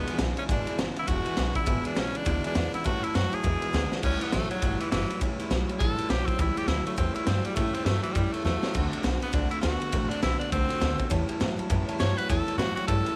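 Heard in a small room, this upbeat, rollicking rockabilly excerpt has a light swing, led by an up-front tenor saxophone, raspy and forceful, that carries the melody and then takes a solo from 4.0 seconds. Beneath it, a woody, thumpy pizzicato upright bass and a raw, saturated garage drum kit with a punchy kick and rolled-off top drive the groove, with drum fills at 3.9 and 8.5 seconds, while a twangy, slightly broken-up electric guitar plays a riff. A bright, full-bodied picked acoustic guitar and a dark, mellow vintage upright piano sit in the background, the piano dropping out after the opening and returning near the end.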